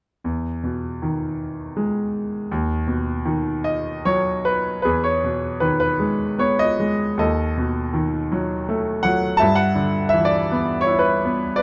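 A dark, warm small-room sound with moderate reverb frames this short excerpt of lyrical classical solo piano, peaceful and calm in a rubato 3/4 at around 75-85 BPM in E major. The bright grand piano sits up front with a brilliant, smooth, vintage tone and short sustain, spanning D#2 to A5. Its harmony moves from Emaj7 and B/D# into a second passage at 4.8 s that passes through B7/D# and reaches G6 at 9.4 s.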